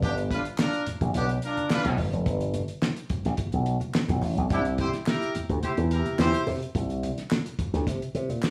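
Set in a moderate studio reverb, this short excerpt of playful funk moves at 107 BPM in a straight 4/4, sitting in G mixolydian and shifting from G to C at 4.5 seconds. Up front, a slap bass runs through an envelope filter with a bright, punchy, amped tone, while a cloth-damped acoustic drum kit thuds along on hi-hat, a tight kick and a fat snare, its dark, rolled-off top keeping it dry and smooth. A warm horn section with light vibrato plays a roomy, pop-style second line before dropping out at 6.4 seconds. Further back, low-tuned congas with thin skins are struck with hard hands in a small room. A crisp group handclap joins at 0.6 seconds, close and dry, adding a human touch to the groove.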